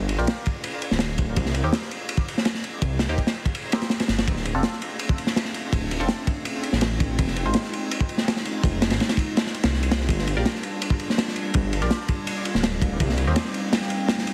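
Raw and frenetic, this drum and bass excerpt with a jungle edge drives on a crunchy, up-front breakbeat kit of tight kick, medium-tuned snare and dark ride under a thick, menacing detuned saw bass with tube saturation, while nasal band-passed chord stabs with phaser and dub echo drop out and return at 10.4 seconds, and a warbly, nostalgic tape-like pad with chorus and 12-bit grit enters at 4.8 seconds in the background, all through a small room and a heavily compressed, radio-like sound.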